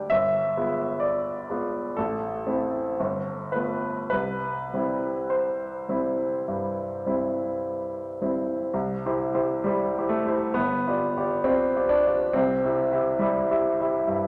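The rhythm moves in a flexible 4/4 with a free rubato feel, the tempo easing between 49 and 70 BPM. This is a romantic classical character piece for solo grand piano in C major, lyrical and hopeful, cut from a longer work and lasting about 14.3 seconds. The piano sounds clear and up front, with a present tone that spans from G1 to G5. The harmony opens on a G7b9 and passes through A minor and G9 before settling on C at 4.1 seconds. A new section begins at 8.7 seconds, where a G7 leads back home to C. A wet recital hall reverb with a 1.8 second decay surrounds the instrument.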